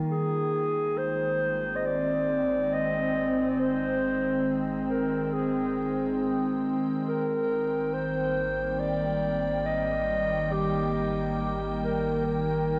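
At an unhurried 69 BPM in straight 4/4, this luminous ambient passage in Ab lydian rests on a single Abmaj7 chord. A morphing, detuned wavetable pad with chorus holds sustained chords up front, while a very quiet, bell-like tine electric piano arpeggio sounds only until 0.6 seconds and a round, deep analog bass fades in from 0.1 seconds. A dark, distant clarinet sings the solo melody through diffuse delay, all bathed in a cavernous cathedral reverb and the worn, warbly pitch drift of old cassette tape.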